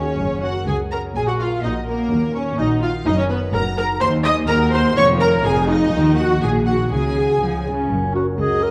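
Mischievous and quirky, this short excerpt from a whimsical film cue sets lush, up-front violas under two smooth violin lines, one in the background and one distant, while a ringing harp plays arpeggios in the background, focused cellos and woody double basses carry the bass from 0.2 s, dark French horns hold brief chords at the edges, and a clear, soft-attacked clarinet slips in at 7.7 s, all in a reverberant recital hall.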